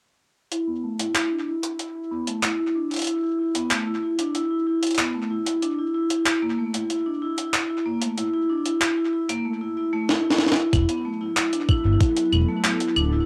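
IDM at 94 BPM in 4/4, eerie and melancholic, built around a ringing, metallic vibraphone playing arpeggios through a low-pass filter sweep, tape echo and cassette grit, alongside a gritty, pitched-up jungle sampler-style kit of claves, handclaps, hi-hat and snare, all in a small, wet home-recorded room. A drum fill at 10.1 seconds leads into a new section at 10.7 seconds, where a deep, rumbling detuned saw bass and a thumpy electronic kick arrive up front. A glassy, ethereal FM pad with ensemble chorus drifts in at 11.1 seconds before this cut from a longer piece ends.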